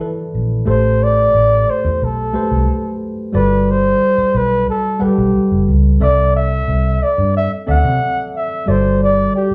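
A breathy, dark flugelhorn with light vibrato carries the melody from the start in a lush 1970s-style soul excerpt at 90 BPM, joined by a worn, slightly out-of-tune tine electric piano heard clean through a combo amp, and by a round, foam-muted fingered electric bass that arrives at 0.3 seconds. The horn and amped bass sit up front in a silky, smooth mood in A dorian, moving through jazzy extended chords such as Am9, Gmaj9 and C69. The band sounds as if playing live together in one large studio, wrapped in a wet reverb.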